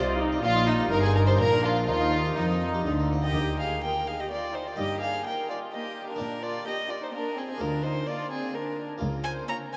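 Baroque-style classical concerto movement with solo episodes, lively and brilliant, in Eb major at 127 BPM in 3/4, cut from a longer piece and bathed in a vast, echoing cathedral reverb. A round, plucked harpsichord, a distant viola section in the background and a dark cello section with a smooth top are underpinned by a rich double bass section that stops at 3.3 s. From 0.4 s a reedy, gut-string solo violin stands up front, joined by a very quiet violin section with a light vibrato and a warm, close second violin section line.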